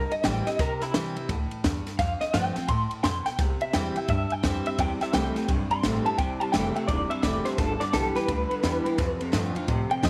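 Rockabilly with a rollicking, retro swing, led by a clean electric guitar solo through a small old amp, slightly broken-up and lo-fi with tremolo and tape echo, over picked full-bodied acoustic guitar, woody pizzicato upright bass and a dry compact cocktail kit with a punchy kick and high-tuned snare, while a second twangy electric guitar with analog chorus adds a low riff from 4.8 seconds.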